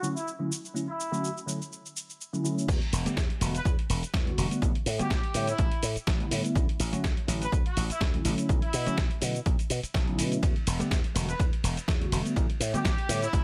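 Filtered disco house at 124 BPM in 4/4, with a light 16th-note swing and a groovy, nostalgic mood in E dorian, cut from a longer piece. It opens with a filter sweep over a Dmaj9 chord, as a clear, distant trumpet section carries the melody between E4 and B4 alongside a bell-like tine electric piano with phaser, both pumping against the sidechain under a low-pass filter. A dusty, gritty sampler-style kit runs throughout, its compressed medium-tuned snare, hi-hat, ride, crash and cabasa set in a small room. At 2.7 seconds the drop arrives: a punchy, tape-tinged electronic kick sits up front and a growly slap bass with an envelope filter enters, ranging from E1 to B2 and also pumping beneath the low-pass filter. The harmony moves through Em11, A9sus4, Dmaj7 and Bm11 before returning to Em11 and A9sus4, all within a digital ambience.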